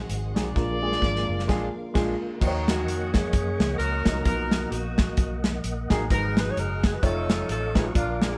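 Recorded live in one room with light reverb, this fervent yet solemn uptempo gospel passage opens with a clear, vibrato-laden trumpet melody and lush background strings over a slow-rotary, lightly overdriven tonewheel organ, a round, foam-muted electric bass, a dark, mellow baby grand piano with audible action noise, and an up-front, smooth acoustic drum kit whose fill and a band accent close the opening before a soft-attack saxophone section takes up the melody at 2.7 seconds.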